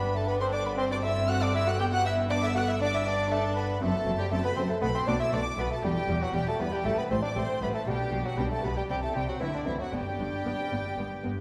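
In a straight 4/4 at 118 BPM, this festive, brilliant baroque-style concerto movement in G major unfolds as a solo episode led by a bassoon with light vibrato and a vintage character. Gut-strung chamber violin sections in period style carry a reedy high melody and a second line, while a delicate, fingerpicked lute with double strings, a nasal cello section and a smooth-topped viola section sit in the background, and a double bass section anchors the bass alongside the cellos. The ensemble is heard from further back in a wet concert hall with a 1.7-second reverb, in a passage of about 11.4 seconds cut from a longer piece.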